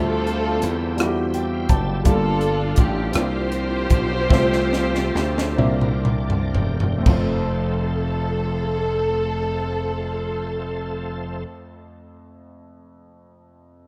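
This short excerpt of slow gospel in a straight 6/8 opens with everything but the drums at once: a lush, bowed symphonic string section carries the melody up front, a baby grand piano sits in the background with a worn, open tone and long sustain, and a shouting tonewheel organ holds sustained chords through a slow rotary speaker, light overdrive, chorus vibrato and audible key click. A punchy slap bass plays up front, and the drum kit joins at 0.3 seconds with a saturated, gritty sound, a high-tuned snare, a punchy kick, crash, hi-hat, rim click and toms in a small, pumping room. Piano and organ both add fills early on, the organ returns with another fill just as a drum fill builds, and the whole band slows from 2.1 seconds as the harmony moves from a rich minor chord through suspended and dominant colours. The drums stop at 7.3 seconds, the strings, organ and bass drop out soon after, and the piano rings on alone until 13.9 seconds over the home chord. 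The uplifting, hopeful mood comes through in a rough home demo mix with audible studio ambience.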